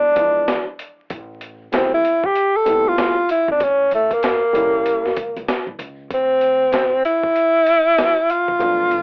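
A breathy, up-front tenor saxophone solos with vibrato and scooped notes until 6.1 seconds in this mellow, nocturnal jazz-hop cut from a longer piece at 96 BPM with a swung 16th feel, backed by a dark, boxy grand piano with audible action noise and plate reverb, a faint, woody pizzicato upright bass with tube saturation, and a gritty boom bap sampler-style kit with a thumpy kick and high-tuned snare that enters at 0.2 seconds, all heard through a home cassette recording with vinyl crackle and a telephone-like tone as E7b9 and Am7 give way to A7b9 and then Dsus2.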